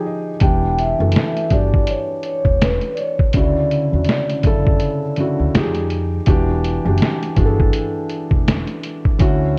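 An 82 BPM groove in 4/4 swings its sixteenths, setting a hazy, nostalgic lo-fi hip hop mood in E dorian across this short cut from a longer piece. A felt-muted upright piano opens alone at 0.0 seconds with soft, dark, intimate chords, its action noise audible up front, before the rest of the band arrives at 0.4 seconds. The sampler-style drum kit sits prominently with a thumpy kick, fat snare and hi-hat, pitched down, compressed and muffled with 12-bit grit and the sound of a large room. Beneath it, a woody pizzicato upright bass with steel strings holds the low end, while a vibraphone played with soft mallets carries a metallic, ringing, band-limited melody with slow motor vibrato until 5.5 seconds. The harmony drifts from Em9 to Dmaj9, touches Fm9 and settles back on Em9, all wrapped in light small-room reverb and the warble of worn cassette tape.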